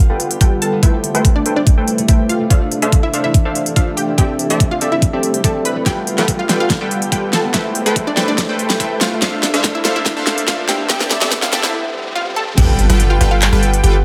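Future bass in a half-time feel, this euphoric, lush passage is cut from a longer piece and spends most of its length building toward a drop. A punchy, detuned supersaw stab carries the riff up front under a long filter sweep. A bright sawtooth unison pluck sings the melody, while a fingerpicked concert harp rings out arpeggios in the background; both pump with the sidechain and trail dub echoes. An ethereal, very quiet pad holds sustained chords beneath them, and a faint electronic riser and swell rise through the build. A layered pop kit with a fat snare, crisp hats, handclaps and crash plays a fill before a short break at 11.7 seconds, with a knocking electronic kick up front. At 12.6 seconds the drop hits with an impact, a deep, boomy 808-style bass and a soft, dreamy lead on airy arpeggios, all set in a moderate digital room reverb.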